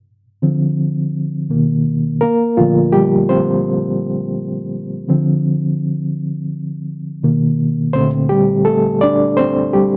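An overdriven reed electric piano takes the solo from 0.4 s, its reedy, gritty tone pulsing with fast tremolo through a combo amp and sitting up front in a moderate stone-room reverb. This romantic, warm soul passage in Bb major moves at 84 BPM in 4/4 with a gentle sixteenth-note swing, cycling through Dm7, Bmaj7 and Bbmaj9. It sounds like a band playing live in one room, caught partway through a longer piece.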